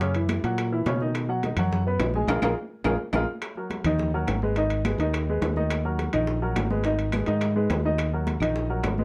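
A driving salsa groove in straight 4/4 at 211 BPM opens this passionate, nine-second excerpt in Eb minor, with the bongos, congas and timbales all sounding from the start and the woody claves joining at 0.3 seconds from a small room in the background. Up front, a round, dark fingered electric bass holds down the low end while an intimate baby grand piano comps through the chords, its action noise audible beneath the playing. Behind them, ringing high-tuned congas sit in a live room and tight compressed bongos carry a saturated edge under soft hands, while metal-shelled timbales ring out from a small room. The harmony moves from Gb7 to Bmaj7 and lands on Bb5, where a band accent from 2.3 seconds and a drum fill from 2.6 seconds push into a new section at 3.4 seconds that alternates between Ebm and Abm. The production is dark with a light reverb.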